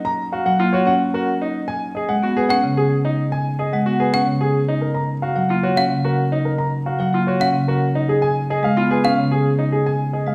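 In a straight triple metre, this propulsive, bright fragment of minimalist classical pattern music sets an intimate grand piano melody, with audible action noise and long sustain, over brilliant, up-front concert grand arpeggios and a warm marimba accompaniment, while a woody, dry trough xylophone adds sharp arpeggios from 2.5 to 9.2 seconds inside a reverberant recital hall as the harmony moves through Gbmaj7, Ab7(no3), Ebm7 and Db.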